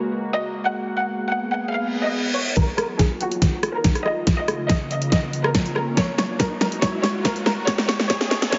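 This heavy wobble dubstep excerpt moves at 141 BPM in a half-time 4/4 feel in Eb minor, with a menacing, chaotic mood. An evolving wavetable pad opens with sustained chords, its detuned, warbling tone thickened by chorus, built-in reverb and sidechain pumping. A lush, bowed violin section enters at 0.3 seconds, up front with vibrato and carrying the expressive melody through a low-pass filter and dub echo. A reverse cymbal arrives in the background at 1.9 seconds, and at 2.6 seconds an overdriven, knocking kick and a drum kit with a huge snare, rim click and bright hats come in up front. From there the passage becomes a build-up, with a drum fill, a riser and filter sweeps on both the pad and the violins, over chords moving from Ebmadd9 through Db6 and Gbadd9 to Abmadd9. The whole mix sits in a moderate hall reverb and has a heavily compressed, radio-like sound with its top end cut off.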